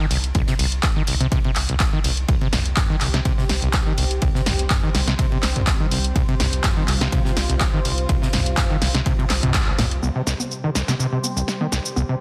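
Driving and raw, this acid house cut moves at 124 BPM in 4/4 with a light 16th-note swing, built on a squelchy, gritty acid bass riff drenched in distortion, tube saturation and tape echo over a round, deep analog bass that pumps against a dry, punchy electronic kick. An up-front analog drum machine supplies congas, handclaps, hi-hat, shaker, toms and a punchy snare, while a very quiet acoustic kit adds dark ride cymbal and a fat snare from a small room. A lush, detuned unison pad with chorus and phaser swells in at 2.7 seconds, the band hits an accent at 9.5 seconds, and the acid riff, drum machine and pad carry on into a brief new section until 12.2 seconds, all under light reverb and a dense, heavily limited master.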